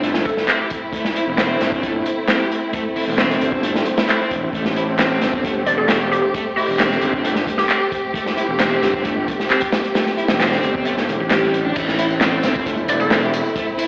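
Breakbeat with a gritty, funky mood, this short cut from a longer piece moves at 133 BPM in a straight 4/4, rooted on A minor. A crunchy, saturated acoustic breakbeat kit sits up front with dark cymbals, a tight kick and a medium-tuned snare, while an electronic house kit of handclaps, ride and tambourine joins at 0.5 seconds, tape-tinged and set back in the mix. A fuzz-soaked, growly fingered electric bass holds the low end alongside a lush symphonic string section, whose bowed sustained chords carry expressive vibrato and a sidechain pumping motion. Deeper in the background, a sludgy, double-tracked distorted guitar riff passes through a low-pass filter and dub echo, and a hollow, bouncy square-wave pluck flickers in briefly with chorus, a telephone-like tone and its own dub echo, most notably from 5.7 to 7.9 seconds. The kick drops out just before a drop at 11.8 seconds, and the whole mix is coloured by plate reverb, a stone-room sound played through a big system, vinyl crackle and an AM-radio haze.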